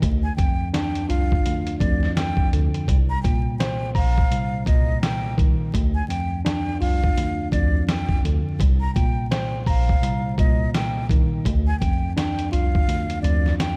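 Moody and dark, this boom-bap hip-hop excerpt in C minor moves at 84 BPM with a swung 16th-note feel, alternating rootless Csus4 and Cm7 chords on a worn, slightly out-of-tune tine electric piano that sits up front with light overdrive and cassette-tape coloring. A gritty, compressed sampler-style drum kit with a thumpy kick and medium-tuned snare shares the foreground over a round, deep analog bass tucked into the background, while a breathy, mellow silver concert flute with unsteady vibrato enters at 0.2 seconds to carry the melody. The production is dark and dry, dusted with vinyl crackle, and the kick drops out at 12.9 seconds.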